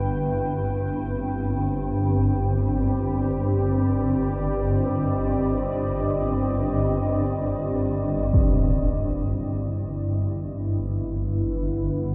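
Dark ambient drone in free time, ominous and cavernous, where a deep, detuned sawtooth-and-sine pad with chorus holds sustained chords over a swarming, granular low drone, both up front in a huge, wet reverb. A ringing quartz singing bowl, played with a felt mallet, sits barely audible beneath them until 8.3 s. At that point a bright, low-passed impact lands, the harmony moves from Cm to Em7, and a filter sweep colours the drone through to the cut at 12.1 s.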